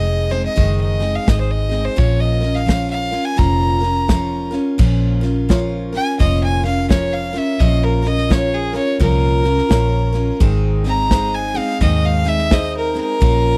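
A clear, biting fiddle with light vibrato sits up front and takes a solo from 4.8 seconds in this dusty, lonesome honky-tonk and classic country excerpt at 85 BPM in Bb minor, carried by a swung 4/4 feel, a bright picked dreadnought acoustic guitar, a round, foam-muted vintage electric bass, a natural country drum kit with a punchy kick and medium-tuned snare, and a dark, woody upright piano that slips into the background at 5.5 seconds, all captured in a dry, close 1970s-style small-room recording.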